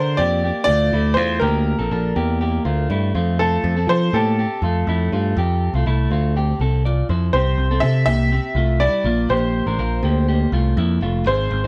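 A growly, up-front picked electric bass anchors this wistful, bittersweet stretch of jangly indie pop, cut from a longer piece, as a worn, slightly detuned upright piano with woody action noise carries the melody over slightly broken-up guitar arpeggios from a small old amp, the band playing live in one room with light reverb and shifting to a new section at 7.3 seconds.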